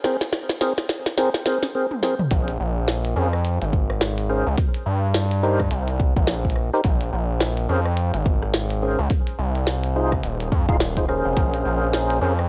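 Glitch hop with a playful, swaggering strut and a swung sixteenth-note feel, cut from a longer piece. A fat tonewheel organ plays stabs throughout, lightly overdriven with chorus vibrato, key click and a slow rotary speaker, plus sidechain pumping and digital delay. In the opening build-up the glitchy drum kit runs fills on clicky hats, rim click, a tiny snare and toms. At 2.3 seconds the drop lands as a punchy, tape-warm layered electronic kick and a gritty, nasal driven synth bass arrive together, the bass a saturated blend of sawtooth and sine with oscillator sync, fast in attack and sustained. The chords move through minor-ninth and minor-seventh colours over the drop, and the mix stays dry and close, with the drums and bass up front.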